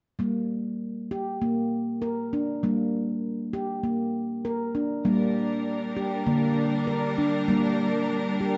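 Meditative world music at 99 BPM in G minor pentatonic, this gentle fragment of a longer piece opens at 0.2 s with ringing, mellow handpan arpeggios played with soft fingertips up front, joined at 5.1 s by a lush, biting symphonic string section holding bowed chords with vibrato, all set in a dark production with wet spring reverb and small-room ambience.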